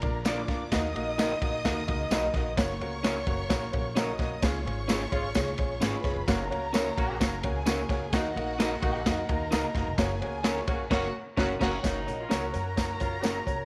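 Danceable and warm, this uptempo 1960s-style soul excerpt, cut from a longer piece, rides a crunchy, gritty breakbeat drum kit with dark cymbals up front, a woody, thumpy pizzicato upright bass with tube saturation, a clear, boxy baby grand piano, lo-fi guitar stabs through a small old amp with spring reverb, a jingly tambourine, and a lush bowed violin section, while a mellow, distant horn section joins at 4.4 s and the band hits an accent from 10.9 s before a brief new section at 11.8 s.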